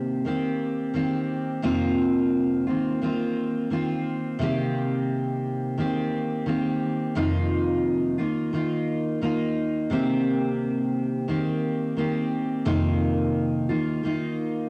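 A bright, full-bodied fingerpicked steel-string jumbo acoustic guitar plays solo and up front in this hazy, wistful indie pop passage cut from a longer piece, lightly swung at 87 BPM in C minor as it moves between Cm7 and F7sus4, its tone colored by subtle chorus, warbly pitch drift and cassette-tape character, all set in light reverb and studio ambience on a home cassette recording.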